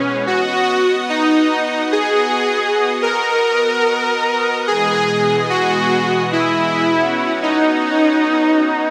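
Bathed in a wet plate reverb with bright 1980s-style digital polish, this nostalgic, dreamy synthwave excerpt moves at a straight 109 BPM in B major. A smooth, detuned supersaw sings the melody up front with a delay trailing its notes. Alongside it, a lush, airy unison pad thickened by chorus sustains chords that move from B to Emaj7/B at 4.7 seconds and to F#sus4 at 6.9 seconds.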